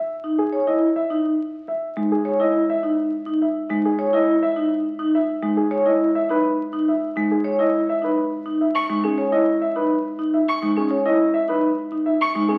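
Hypnotic and meditative, this short excerpt of minimalist classical pattern music in C# minor moves at 104 BPM in 3/4, with an up-front grand piano carrying the melody over ringing, metallic vibraphone arpeggios with motor vibrato, a mellow, woody marimba on soft mallets entering at 2.0 seconds, and a clear, focused bowed violin adding high arpeggios from 8.8 seconds, all bathed in wet studio reverb and the crackle of a very old 78 rpm record.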